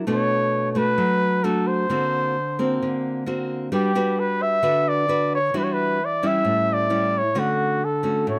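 A nylon-string guitar opens this short, sophisticated bossa nova clip, with a flugelhorn joining almost at once at 0.1 seconds. The guitar is acoustic and fingerpicked in a classical manner, laying down the accompaniment through a chord sequence that moves from Bm7 and Daug7 to Gmaj7, then Em9 and A7 before settling on Dmaj7. Above it, the warm flugelhorn carries the melody as a jazz-style solo, its tone shaded with vibrato and its line staying in a compact mid range. Both instruments sit up front and are captured by close, detailed microphones, with light reverb adding a touch of space. The straight feel and lush jazz harmony give the music a sunny, polished glow until the cut ends at 8.4 seconds.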